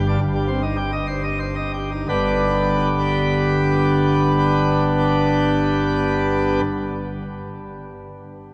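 A classical organ toccata in 3/4 and G major, this short excerpt cut from a longer piece sounds jubilant and majestic, with the tempo moving between 83 and 112 BPM. A solo pipe organ on a full plenum plays throughout its 6.6 seconds, spanning G1 to Eb5 with brilliant mixtures, baroque voicing and a crisp chiff, set up front in the sound. The opening slows down over its first 2.1 seconds, passing through a C minor chord over G before resolving to G major at 2.1 seconds for the second section. A cathedral reverb with a 6.5-second decay surrounds the organ with a soaring, lingering wash. The recording carries the worn character of old cassette tape, whose warbly pitch drift gives the grand sound a wavering, aged patina.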